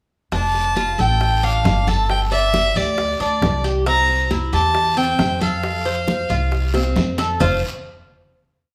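A live-in-one-room studio sound with moderate large-room reverb frames this relaxed, danceable Cuban son and guajira in F major at 136 BPM, where an earthy, biting violin with light vibrato states call-phrase motifs up front over a metallic, double-strung tres guajeo, a growly, woody pizzicato upright bass tumbao that anticipates the chords, round low-tuned bongos in steady eighths with hand bell, bright congas with slaps and open strokes, and a raspy guiro in the background, before a drum fill at 6.7 seconds leads to a final chord at 7.4 seconds.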